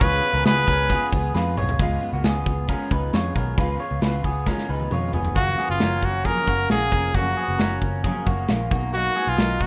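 A rough home-demo mix with light reverb carries this breezy, bright jangly indie pop excerpt at 134 BPM in F# major, where a forceful, up-front trumpet with light vibrato, plate reverb and analog delay states the melody briefly at the start and again from 5.4 seconds, over a shimmering, octave-doubled twelve-string acoustic guitar, slightly broken-up lo-fi electric guitar arpeggios with spring reverb and delay, a dark, foam-muted electric bass, a punchy big rock drum kit with two fills, and a very quiet, jingly tambourine that stops at 1.7 seconds, as the chords move from C#7 to F#maj7 and Bmaj7.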